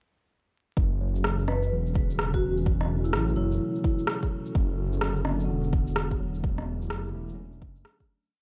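A muffled, overdriven two-step kick and a deep, rumbling detuned saw bass with long gliding notes open this wistful, nocturnal future garage piece at 0.8 seconds, set at 127 BPM in F# phrygian with a swung, skittering shaker and rim click, a clean tine electric piano scattering gritty delayed notes in the background, a warbling, nostalgic tape-like pad holding sustained chords, and a metallic, ringing vibraphone with fast motor vibrato carrying short melodic phrases until 4.0 seconds, all over a dry, crackling vinyl bed that fades out from 5.8 seconds.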